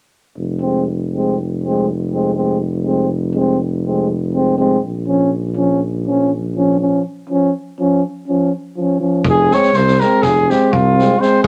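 This Balkan brass band excerpt moves in a straight 9/8 at 243 BPM counted in eighths, a restless, virtuosic piece in F minor cut from a longer performance. A mellow tuba with light vibrato anchors the bass from 0.4 seconds, and two euphoniums join just after, one smooth-topped and soft-toned in the lower register, the other warmer and up front with a gentle attack and its own light vibrato. Together the low brass carry the opening chords through F minor, B-flat minor and D-flat major in a classical manner. At 9.2 seconds the harmony returns to F minor as a new section begins, and a street-band drum kit enters with a boomy kick and a medium-tuned snare, its small-room sound rounded and rolled off at the top. A mellow trumpet takes the melody from 9.3 seconds, sitting prominently in the mix yet sounding distant and roomy, phrased with classical poise. Light reverb gives the ensemble a modest sense of space.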